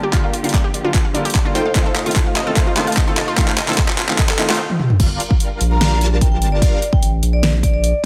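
A punchy, detuned supersaw stab carries the riff in this lush, bittersweet future bass passage, its sawtooth tone colored by phaser, a low-pass filter, delay and sidechain pumping, with a filter sweep running through the build-up. Beneath it, a half-time groove pairs an up-front, layered electronic kick with a pop drum kit of fat snare, warm hi-hats, handclaps, toms and crash, both re-recorded in a small room, while a deep, saturated sine sub bass sustains underneath with its own pumping. In the background, a wave-folded unison pluck ripples through arpeggios with delay, a felt-muted upright piano adds mellow, intimate accompaniment with audible action noise, and a very quiet studio string section holds rich, vibrato-laden chords over a Gm7 to F7 progression. Drum fills drive the build-up, then a stop at 4.6 seconds clears the way for the drop at 5.0 seconds. From 5.7 seconds, a dry, close-miked vibraphone played with medium hard mallets rings out a metallic melody, all under a light reverb in this short cut from a longer piece.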